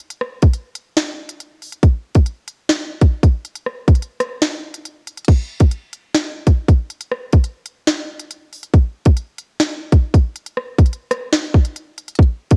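A dry, cassette-taped home recording cut from a longer hip hop piece sets a tense, cold mood at 139 BPM in a half-time 4/4 feel, carried solely by an up-front electronic drill drum kit whose hard-clipped kick, sharp snare, crisp hi-hats, rim clicks and crash cymbal run from 0.0 to 12.6 seconds, with a short break from 4.4 seconds before a new section begins at 5.3 seconds.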